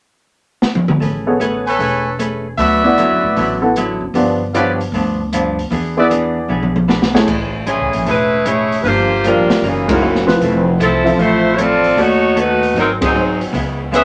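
Big band swing at 153 BPM with an energetic, joyful lift, cut from a longer piece: a dark, smooth jazz kit with a high-tuned snare and boomy kick opens with a fill at 0.6 seconds, then woody, growly upright bass, a clean, compressed hollow-body guitar and a worn, present baby grand piano fall in behind it. A bright, tight trumpet section punches stabs with light vibrato until 6.1 seconds, and after a second drum fill the mellow, vintage-toned saxophone section takes the melody up front from 7.7 seconds, its vibrato carried over lush extended harmony with band accents along the way. A small room reverb gives the whole ensemble a wet, close feel.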